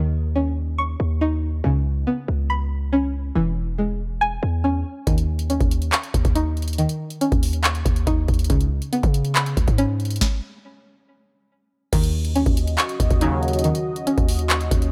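A half-time trap groove in 4/4 carries this eerie, melancholic hip hop excerpt, where a twangy, string-like resonator pluck plays chorused, delayed arpeggios over a punchy, heavy 808-style bass from the start; a booming analog drum machine with a deep kick, crisp snare, metallic hats, handclaps and crash arrives at 5.1 seconds, a stop hits at 10.2 seconds, and a dark, detuned analog pad holds sustained chords from 12.5 seconds, joined briefly by juicy, resonant polysynth stabs, all in a dry mix.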